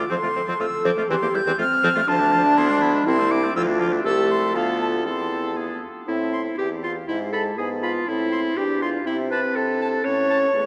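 Drenched in a vast cathedral echo with a dulled top end, this brief cut from a longer stormy, dramatic classical-period movement for wind quintet moves quickly at 121 BPM in 2/4 with a straight feel in A minor. An airy, distant silver flute with vibrato carries the high melody, a clear oboe with light vibrato sings a second line until 10.4 s, and a bright clarinet and mellow French horn fill the accompaniment. A soft-attacked bassoon anchors the bass. The harmony passes through dark minor and diminished colours to a cadence on E before the second section opens on A minor at 6.1 s and settles on A major.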